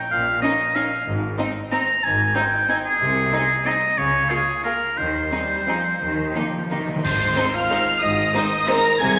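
A classical orchestral ballroom waltz in 3/4 with a sweeping, elegant rubato feel, cut from a longer piece, where an up-front, vintage-toned oboe sings a second line over rich, distant cellos and double basses as a clear studio violin section carries the melody from 0.4 s, joined by lush second violins and background violas, before bright cymbals and bass drum arrive at 5.0 s, a very quiet timpani fill leads to a band accent at 7.0 s, and an airy flute, a faint clarinet and dark horns and trombones enter under a wet scoring stage reverb.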